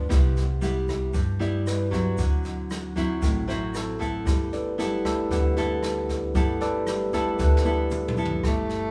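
A relaxed, straight bossa nova groove in 4/4 at 115 BPM, driven by brushed jazz drums with a boomy kick and rim clicks plus a grainy shaker in the background, moves through Cmaj7, D9 and G69 in G major with a sophisticated feel. A fingerpicked nylon-string guitar up front with audible finger squeak and a woody pizzicato upright bass support a bright, barky tine electric piano that solos from the start, all heard live in one large studio room with moderate reverb. A drum fill at 7.4 seconds leads into a breathy, growling tenor saxophone that enters at 8.5 seconds with a raspy, scooped subtone just as this excerpt from a longer piece ends.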